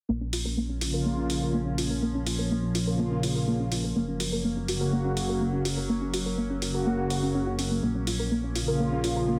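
A straight 4/4 pulse at 124 BPM drives this cinematic, driving melodic techno excerpt in Bb minor, cut from a longer piece, with an electronic, analog-toned hi-hat ticking from 0.3 s to 9.1 s. A fat, thick sawtooth bass sits low under the chords from the first moments, while a soft, round pluck, gentle yet full-bodied and faintly dark, spins arpeggios through analog chorus and digital delay as a filter sweep runs across it throughout. An evolving wavetable pad holds sustained chords with a slow attack and long release, its morphing unison tone colored by chorus, its own reverb and a phaser. From 0.8 s a brassy, bold, airy analog pad adds detuned stabs with a noise layer, vibrato, a moving notch, chorus and delay, and it too carries a filter sweep. The harmony moves from Bb minor to Gb and back to Bb minor, all set in a moderate digital room with a heavily compressed, radio-like sound.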